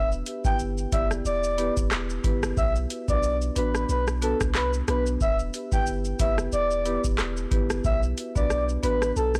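A breathy, flute-like synth lead with chorus and delay opens alongside a punchy sub bass with a pitch-drop attack on this bouncy, tough dancehall excerpt in E minor at 91 BPM with a swung 16th feel, as a booming analog drum machine with a deep kick, metallic hats, handclaps, rim clicks and shaker joins at 0.1 seconds and a dark marimba played with medium mallets fills in from 0.3 seconds over alternating Em and Bm chords, all in a dry, blown-out, overdriven recording.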